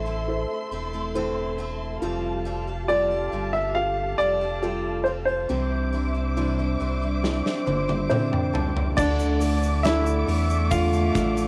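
A straight 4/4 pulse at 69 BPM carries this melancholic, emotional pop ballad in D minor, where a clear, up-front grand piano sings the melody with analog delay over a woody upright piano, a dark, lush bowed string section, bright picked steel-string acoustic guitar arpeggios and a deep sine-and-triangle sub bass, until a huge arena drum kit with a punchy kick and big-room sound enters at 7.2 s with a fill beside an upright piano fill, and a reedy, distant cello section and a grainy egg shaker join at 9.0 s, with most parts colored by cassette tape in a home recording.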